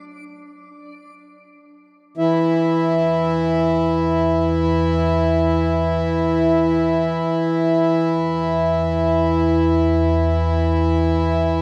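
Warm and luminous, this ambient passage in free time is cut from a longer piece and moves in two sections. It opens with a dreamy, reversed texture that plays alone until 2.2 s, a soft, granular, detuned haze in a high register with its own reverb. A reedy, breathing pedal harmonium then takes over as an up-front, mellow drone, fading in over the rest of the recording. From 3.2 s a deep, ominous bass drone on a low E rumbles beneath it, nasal and dark, with a slow attack and long release. A moderate plate reverb and an echo-heavy mix lend the whole piece a spacious glow.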